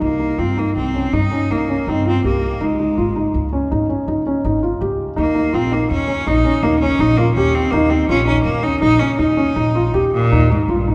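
A bowed cello with a clear, biting tone and light vibrato carries the melody from the first moment, alongside soft, intimate arpeggios on a felt-muted upright piano and a woody, thumpy pizzicato upright bass. This restless, shimmering contemporary chamber piece moves in an uneven 7/4 over Cm, Dbsus2 and Eb7(no3) chords. The cello and piano sit up front, bathed in the long, wet reverb of a church or concert hall, in a fragment cut from a longer work that runs to 10.9 seconds.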